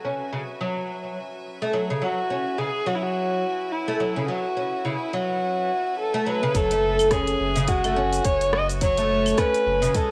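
Organic downtempo in F# minor at 106 BPM, this hypnotic, mystical excerpt moves with a gently swung sixteenth-note feel and has the homely character of a cassette recording in a small room. From the start, a woody, plectrum-plucked oud arpeggiates up front through a low-pass filter and analog delay, while a bright, earthy chamber string section holds sustained chords in the background with a sidechain pumping motion. At 2.0 seconds a single bowed kamancheh takes the melody, its smooth, even tone carrying vibrato and portamento, sounding distant yet placed up front and trailed by analog delay. At 6.5 seconds the groove arrives as the harmony shifts from an open F#7 to F#m7: a tight, tape-softened electronic kick, a produced kit of claves, smooth hats, rim click and shaker dulled by low-pass filtering, and a round sine sub bass holding F# with sidechain pumping. The result feels intimate and slightly hazy, with the plucked and bowed lines floating above a soft, filtered pulse.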